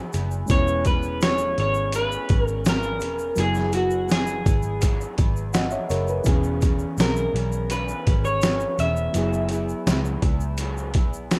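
This indie pop and bedroom pop excerpt is laid-back and dreamy, cut from a longer piece and moving in a straight 4/4 over an alternating E6 and F#9sus4 progression. A sampler-style boom bap kit sits up front, pitched down, compressed and overdriven, with a thumpy kick, a medium-tuned snare and hi-hat, re-recorded in a large room for a gritty edge. Beneath it, a vintage muted picked electric bass gives a dark, round, foam-muted low end, while a worn, reedy electric piano, slightly out of tune and heard through its built-in speakers, fills out the harmony. An electric guitar through a small old amp adds lo-fi, slightly broken-up accompaniment with subtle chorus and vibrato, and a grainy, bright egg shaker sits close and dry in the background. From 0.5 s to 10.2 s a second picked guitar carries the melody up front, its lush chorus giving the rough home-demo mix, touched with light reverb, its dreamy centre.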